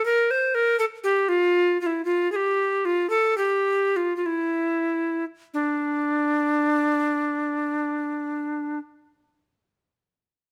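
Grave and introspective, this short passage, cut from a longer piece, is a baroque-style classical fantasia for a lone tenor recorder played in a free, rubato feel over a steady four-beat metre. The instrument sits up front, and its airy, woody tone carries vibrato and a crisp attack, with a distinct chiff at the start of notes. The pace slows through the opening phrase, which gives way to a second passage at 5.5 seconds. The melody stays in the recorder's lower middle register, and the player stops at 8.8 seconds. A moderate stone-room reverb surrounds the sound, giving it an austere, chapel-like resonance.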